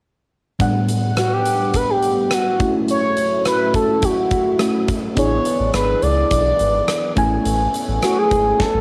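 A mellow electric piano with chorus and phaser, a lush detuned pad in the background and a huge arena drum kit with a punchy kick and pumping room sound open this glossy, nostalgic 1980s-style pop excerpt at 105 BPM. At 1.2 seconds a smooth, expressive synth lead with vibrato takes the melody up front, and a round, deep analog bass joins at 5.2 seconds as the chords move from Gmaj7/A and F#m7/A to E7 and Amaj7. A drum fill at 8.6 seconds closes the passage, and a small, wet room and cassette home-recording character tint the sound.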